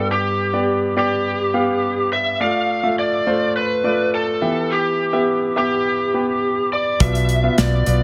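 A straight 4/4 pulse at 104 BPM carries this bittersweet, earnest piano-driven pop fragment, cut from a longer piece and tuned to A4 = 443 Hz, as a polished grand piano plays up-front accompaniment over G, Dm and Em while a dark, lo-fi, overdriven lead guitar through a small cranked amp picks out the melody, until at 7.0 s, as the harmony turns to Bdim, a round, foam-muted vintage fingered electric bass and an airy modern studio drum kit with a punchy kick and medium-tuned snare join in, with light reverb and small room ambience surrounding the sound.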